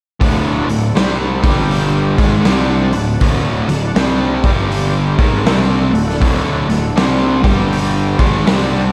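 A big arena sound bathed in lush hall reverb frames this gritty, driving, swung blues rock and southern rock excerpt, where an up-front, double-tracked, dark guitar riff sits over a growly fuzz bass, a punchy, saturated garage drum kit with a rolled-off top, and a very quiet, thick tonewheel organ holding sustained chords through a slow rotary speaker.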